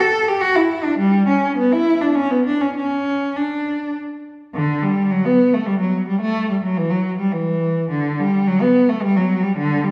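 A lone bowed cello plays a flowing, dance-like baroque-style suite movement in D major and 3/4 at a rubato 98-111 BPM, its rich, smooth, even tone carried by vibrato and set back in the lush reverb of a recital hall, in a brief excerpt cut from a longer piece.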